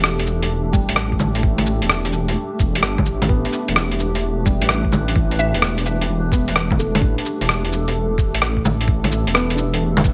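A wistful, melancholic future garage excerpt opens on a felt-muted upright piano with digital delay sitting in the background, a cloudy granular pad with built-in reverb and 12-bit sampler grit, and a deep, rumbling detuned saw bass up front, all three pumping against the sidechain, over a muffled, pitched-down sampler kit of bongos, cabasa, hi-hat and rim click, with vinyl crackle throughout. A thumpy, tape-warm electronic kick joins at 0.7 s, settling into the swung 16th-note groove on a lingering Em7. At 5.4 s a woody, round synth pluck with chorus and delay sounds a brief single note high above.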